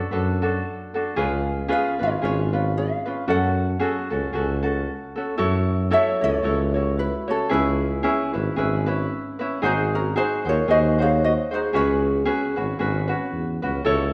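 A close-miked tuba sits up front in this relaxed, sunny Hawaiian excerpt, carrying the bass with a warm tone, light vibrato and a pop-style delivery. Two fingerpicked acoustic ukuleles fill out the upper range: a bright, light one plays the melody until 12.5 seconds, while a mellow, up-front one provides the accompaniment throughout. At 5.9 seconds a vibraphone played with medium mallets and motor off enters in the background with a metallic, ringing second line, and it stops with the melody at 12.5 seconds. Swung eighth notes give the groove an easy lilt. The whole recording sits in a church or concert hall, with a wet recital-hall reverb that lends the parts a spacious glow.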